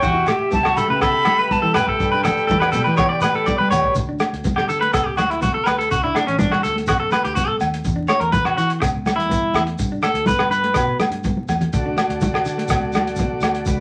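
Highlife guitar band groove at 123 BPM in D major, danceable and warm, cut from a longer piece, where a breathy, bright flute sings briefly over reedy overdriven organ chords and a twangy, slightly broken-up guitar picking up-front arpeggios until 11.0 s, while a round fingered bass, a dark small-room soul kit with a punchy kick, close congas, a grainy shekere and ringing agogo bells keep the dance going, and a clean, compressed guitar with spring reverb takes a solo from 4.0 s through a drum fill, all in a club reverb with vinyl crackle.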